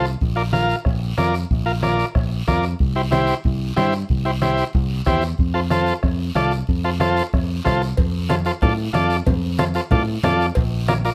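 An overdriven combo organ and a fingered electric bass open this joyful, festive cumbia together, the organ buzzy and vintage with a light vibrato, the bass dark, round and punchy, both placed up front. Almost at once a raspy, compressed guiro and a soft-beater bombo join in, with low-tuned congas, damped and played with soft hands, sitting in the background. The harmony moves from Bb to C and settles on F before returning to Bb near the close. At 8.0 s the music shifts into a new section, where ringing metal-shell cowbell and timbales join from the background. A light reverb surrounds the recording, and this straight, festive passage is cut from a longer piece, ending at 11.1 s.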